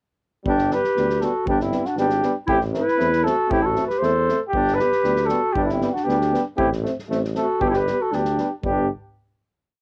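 A straight two-beat pulse drives this short, festive and wild Balkan brass band piece, with an acoustic drum kit in a small room playing a two-stick pattern of punchy kick and medium-tuned snare, softly placed in the mix and carrying a cassette-tape tint. Beneath it, the tuba holds down root-and-fifth bass on the main beats, its low tone slightly thickened by tube saturation and touched with light vibrato. Up front, a mellow flugelhorn states catchy hook phrases in a classical style, with gentle vibrato and a roomy, distant quality, also coloured by cassette tape. A clarinet follows in harmony, mostly in thirds, while the euphonium and a brilliant, vintage-sounding trombone sit in the background, each carrying one line of the group's pulsing chords over a simple alternation between G and A minor. The whole piece has the homespun feel of a cassette home recording with a light reverb, and it settles onto a final chord at 8.6 seconds.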